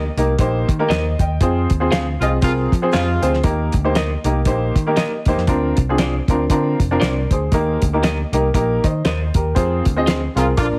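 Uplifting and joyful, this brief cut from an uptempo 1960s-style soul piece moves at 118 BPM in Eb major with a swung 4/4 feel, carried by a worn, woody upright piano with long sustain, a cloth-damped thuddy drum kit with a fat snare and tight kick, and a round, foam-muted picked electric bass. An electric guitar through a small old amp adds slightly broken-up stabs with tremolo, while a clear, punchy horn section with octave doubling plays a second line at 2.2 s and again at 10.3 s, joining band accents over the Fm chords. Light reverb and small room ambience sit beneath a heavily compressed radio sound.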